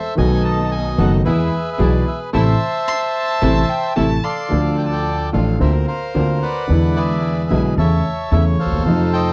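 Dry and close with a 1970s studio intimacy, this sultry, passionate tango excerpt moves rubato at 111 BPM, shifting from A minor to D minor at 4.5 s, as a reedy, band-limited bandoneon carries the melody up front over a worn baby grand piano, a woody, growly pizzicato upright bass and veiled, muted string stabs in the background, while a distant violin with vibrato and portamento adds a brief second line from 2.9 s to 4.5 s under a band accent.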